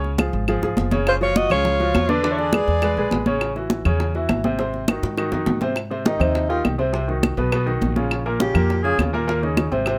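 The sound is close and detailed, with little reverb, in this lively, sophisticated Afro-Cuban jazz excerpt cut from a longer piece, moving at a brisk 204 BPM in 4/4. A clear baby grand piano and a thumpy upright bass, plucked on dark gut strings, sit up front. High-tuned, bright, damped congas and woody claves sit close, while round, low-tuned bongos stay in the background. Drum fills punctuate the groove. At 1.1 s a breathy alto saxophone with subtone and vibrato carries the melody, joined by a growling tenor saxophone with a raspy, gritty edge and scooped notes; both horns have a distant, roomy quality. From 5.8 s the music settles in Ab major, and the alto takes a solo over chords that include Abmaj7, Cdim and Bbm.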